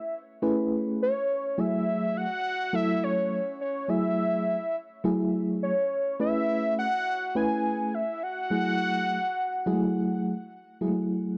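Funky and slick, this short excerpt is a straight-feel 4/4 funk groove at 104 BPM in F# minor, moving between B13sus4 and F#m9 chords. A mellow FM electric piano, round and warbling with chorus and tremolo, carries the accompaniment from 0.4 seconds, while a fat, detuned sawtooth analog lead with a sub octave, vibrato and phaser sings the melody between C#5 and G#5 from the start. Both sit up front in a dry, close 1970s-style studio sound touched with digital ambience.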